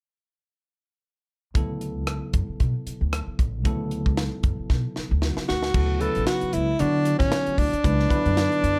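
A clear alto saxophone takes the solo at 5.5 seconds, sitting up front with a soft attack, light vibrato and scooped notes in a jazz style. This funky, slick slice of electric jazz fusion, cut from a longer piece, moves at 115 BPM in 4/4 with lightly swung sixteenths in D major, resting mostly on a Dmaj9 chord. From 1.5 seconds a barky, bell-like tine electric piano plays clean, direct accompaniment beneath, while a woody pizzicato upright bass with steel strings anchors the low end. The crisp fusion drum kit, also up front, pairs a high-tuned snare and tight kick with hi-hat, rim clicks and crash cymbal in a small, pumping room, and a drum fill at 4.7 seconds leads into the sax's entrance and a new section. A light reverb gives the whole recording a touch of space.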